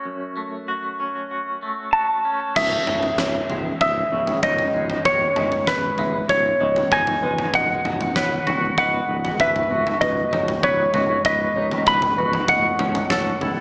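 A twangy electric guitar opens this brooding, cinematic post-rock excerpt with arpeggios shimmering through tremolo and tape echo, and a bright, compressed lap steel slide melody joins up front at 1.9 seconds. At 2.6 seconds the harmony moves from F#m to C#madd9 as a huge arena drum kit with a fat snare and punchy kick arrives alongside a growling, overdriven picked bass and a mellow felt-muted upright piano whose arpeggios and audible action noise sit in the background. An ethereal, detuned pad enters very quietly at 4.1 seconds to hold sustained chords over C#madd9, B6/C# and A6/C#, all at a straight 97 BPM in 4/4 in C# minor, with moderate scoring-stage reverb and a small-speaker sound.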